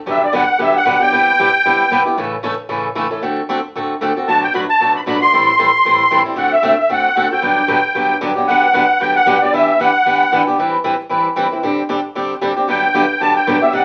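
A reedy, shimmering musette accordion carries the melody up front in this lively, playful swing jazz fragment in G major at 228 BPM, stating a phrase in the opening 2.0 seconds before returning at 4.3 seconds for a longer line. A bright, boxy picked acoustic guitar supplies swing accompaniment throughout, moving through chords like Gmaj7, Em9 and D7sus4 as the tune shifts into a second section at 8.5 seconds. Studio reverb surrounds the pair, and the sound carries the crackle of a very old 78 rpm record.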